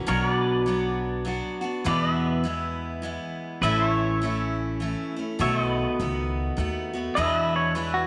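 Down-home and sunny, this brief honky-tonk and classic country waltz moves at 102 BPM in 3/4 with a swung feel, as an up-front, full-bodied picked steel-string acoustic guitar and a woody, thumpy pizzicato upright bass carry Bm, E, A and B7 while a pedal steel guitar lays lush, chorused sustained chords on top, and a twangy clean electric guitar with tremolo and tape echo arrives at 7.2 seconds over E7, all bathed in a wet spring reverb.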